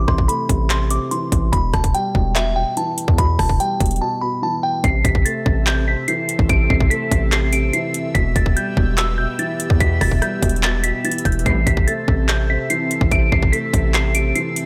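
A delicate, tinkling FM tine bell carries the melody of this eerie, melancholic half-time trap excerpt, its vintage warble softened by chorus, low-pass filtering and digital delay, over a dark, boxy concert grand and a punchy, heavy 808 bass with a noise layer. An overdriven, up-front electronic drum kit with hard-clipped kicks, metallic hats, handclaps and rim clicks drives the beat, and a short break arrives at 4.0 seconds. An airy, detuned pad with phaser enters at 5.2 seconds, and a very quiet, veiled con sordino string section adds a brief stab at 11.5 seconds in a dry, close mix.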